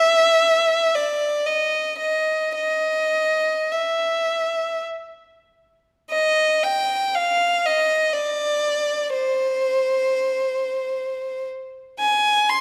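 Lonely and meditative, this classical fragment for unaccompanied violin moves freely in a rubato 3/4 at 42-64 BPM, settling into C minor from 6.1 s, with a single close, up-front bowed violin singing smooth, even lines from C5 to C6 with a warm vibrato inside a moderate scoring-stage reverb.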